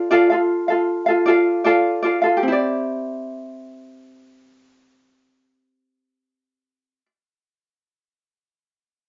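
Pop with a heartfelt, easy-going mood at 78 BPM in C major, this short excerpt features a light, fingerpicked acoustic ukulele up front playing accompaniment from C4 to F5, moving from Dm to Cadd9 at 2.4 seconds, with cassette tape coloring, moderate studio reverb and a home-recorded sound whose highs are cut off above 7.5 kHz.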